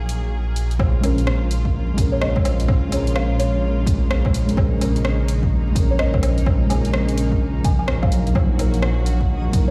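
Future garage at 127 BPM in Bb minor with a swung 16th feel, this melancholic, nocturnal excerpt from a longer piece sets muted, felt-like synth keys with chorus and digital delay against distant, bowed symphonic strings, a deep, rumbling detuned saw bass, all three pumping to the sidechain, while a very quiet reversed swelling texture drifts in at the start and returns by 9.3 s, an overdriven deep house kit of hi-hat, rim click and woodblock enters at 0.1 s and is joined by a punchy electronic kick from 0.8 s, and a woody, buzzing marimba with soft mallets carries the dub-echoed melody in the background from 2.1 s, all over vinyl crackle and large studio reverb.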